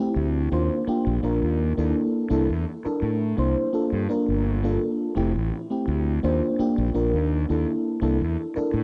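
A lightly swung sixteenth-note feel in 4/4 carries this dreamy, nostalgic vaporwave fragment, cut from a longer piece, where a mellow FM electric piano with a soft, full-bodied tone and a faint noise layer drifts through rich chords like Ebmaj7, C13 and Gm9, colored by phaser, subtle chorus and tape echo. From 0.2 seconds a fuzzy fingered electric bass joins, overdriven yet round and punchy, sitting up front beneath the keys. A lush hall reverb and a dark, warm production wrap the whole fragment in a hazy glow.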